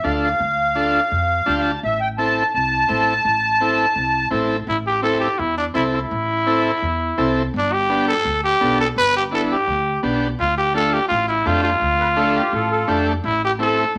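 A straight 4/4 pulse drives this fiery Latin excerpt, with a woody pizzicato upright bass and a buzzy vintage combo organ carrying the accompaniment while a sweet, reedy accordion with light tremolo tuning takes the opening solo. The organ slips in a brief fill at 1.3 seconds, and at 4.7 seconds a raspy, growling trumpet, close-miked and up front, takes over the melody with punchy, gritty pop-style phrasing and light vibrato. The accordion briefly returns near 12.0 seconds, and a wet studio reverb gives the whole band a lively sense of room.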